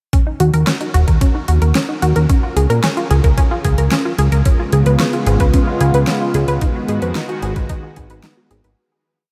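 Cinematic and moody, this short synthwave piece opens with a lush, punchy sawtooth pluck cycling a four-step arpeggiated sequence through delay, over a thumpy, tape-warm machine kick up front and an 80s-style backbeat of fat snare and bright closed hats. A thick, detuned analog bass gallops in sixteenth notes with sidechain pumping through the Ebm7, Bbm7/Db, Db7 and Abm7 changes. At 4.5 seconds a smooth, soft-attack sawtooth pad joins with chorus and its own pumping, as the dreamy, reverb-soaked mix fades out from 5.9 seconds.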